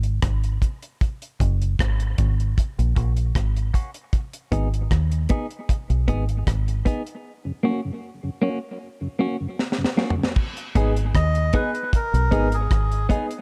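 A dark, small-room dub reggae mix, meditative and heavy at 77 BPM in G# minor, rests on a round, foam-muted fingered bass and a dry drum kit with a high-tuned snare and tight kick up front, joined by a compressed clean electric guitar with tape echo and brief touches of a mellow tonewheel organ with key click, slow rotary speaker and tape echo, moving between G#m and F# through a filtered-sweep break and a drum fill at 9.6 seconds into a closing passage where a deep-voiced grand piano adds stabs and a reedy, breathy melodica carries the melody from 11.2 seconds.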